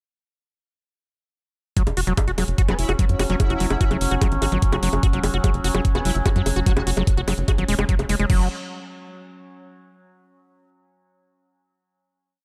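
Alien and intense, this short psychedelic trance piece drives a knocking four-on-the-floor electronic kick and a programmed kit of bright hats, bongos and crash beneath a punchy, rolling sixteenth-note sequencer bass and a squelchy, gritty acid riff whose 3-step loop drifts against the bar, while a ring-modulated drone of moving overtones holds sustained chords, a metallic FM wobble bass sits in the background from 2.7 to 6.8 seconds, and the groove gives way to a final chord at 8.3 seconds.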